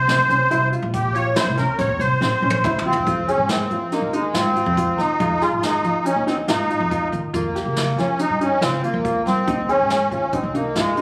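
Progressive instrumental band music in 5/4, brooding and tense, cut from a longer piece: a reedy, shimmering musette accordion carries the melody up front over a woody pizzicato upright bass, a clear but worn baby grand piano playing arpeggios, and a brushed jazz drum kit with a boomy kick. A drum fill from 2.2 to 3.1 seconds leads into a new section as the harmony moves from C to F minor, later passing through Bb minor over F and an Eb suspended chord. The performance was captured on a phone in a room with light club reverb, and the accordion has a vintage, band-limited character.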